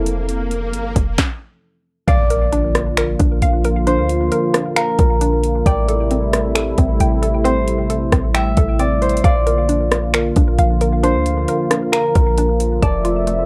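Blissful and dreamy, this excerpt of atmospheric cloud-rap moves at 134 BPM in a half-time feel in Bb lydian, opening with a moody, detuned analog pad with chorus and sidechain pumping over a deep, boomy 808-style bass with tube saturation and a smooth R&B kit of finger snaps, rim clicks, soft kick, sharp snare and warm hats, overdriven and up front, while an electronic swell builds to an impact at 2.1 seconds. From that point a ringing, fingerpicked concert harp carries the melody through a low-pass filter and analog delay, joined by hollow, bouncy square-wave pluck arpeggios. The sound is dry and gritty, with chords drifting from Fmaj7 through Bb and Am7 before returning to Fmaj7 at 12.8 seconds.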